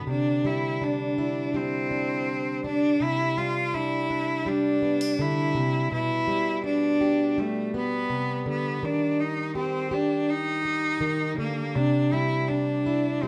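Folk music with a nostalgic, tender mood, where a clear, smooth bowed cello carries the melody with light vibrato over a warm, fingerpicked plugged-in acoustic archtop guitar, both up front and playing throughout as a band in one room with moderate large studio reverb, the chords moving from Cadd9 through G/B and an Eb before returning to Cadd9 at 11.8 seconds.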